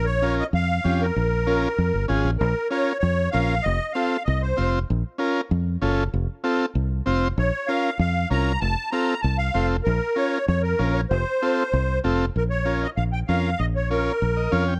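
A straight 4/4 cumbia groove drives this short excerpt at 193 BPM, danceable and pushing forward in B-flat harmonic minor. A punchy, foam-muted electric bass sits up front from the start to 14.8 seconds, holding the low end between F1 and F2. A buzzy vintage combo organ with light vibrato fills in the accompaniment from 0.2 seconds, and a short transistor-organ fill arrives at 14.2 seconds. The musette accordion carries the melody with a reedy, shimmering tone, dropping out briefly around 4.7 seconds before returning at 7.4 seconds. The chords swing between B-flat minor and F throughout, and the dry, close 1970s-style studio sound keeps every part present and direct.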